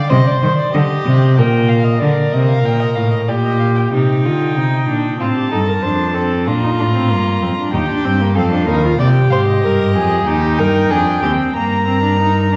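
Heard from further back in a reverberant scoring stage with a 1.9-second tail and a layer of vinyl crackle, this excerpt from a longer piece presents a baroque-style fugue for string quartet in C minor. The mood is elegant and joyful, moving at 94 BPM in a straight 4/4. Two distant, dark-toned violins carry the upper voices, one playing the melody between C5 and Bb5 and the other a slightly louder second line below it, both nasal and played with gut strings in period style. Beneath them, a rich, up-front cello anchors the bass from Eb2 to Eb3 and sits as the strongest voice in the balance. At 3.9 s, as the second section begins, a close viola joins with a reedy accompaniment, its airy bow adding texture. The harmony moves through C minor, G minor, F and E-flat before settling on an Eb/G chord near the end.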